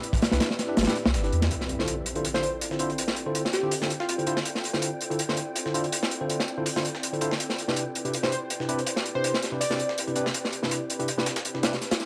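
A frenetic, raw drum and bass and jungle excerpt at 163 BPM in D dorian, where a crunchy, saturated breakbeat kit with a tight kick sits up front over a compressed, overdriven sampler-style break in the background, while a deep, thick sub bass drops in from 0.3 to 1.5 s, an electronic impact lands at 1.5 s, a clean tine electric piano stabs through dub echo, a punchy, catchy plucky lead with vibrato appears twice, and an ethereal detuned pad with ensemble chorus and a breathy wind-like noise texture hang behind it all as the pad is filter-swept and the chords move between Cmaj7 and Dm7 in a dry, gritty hardware recording.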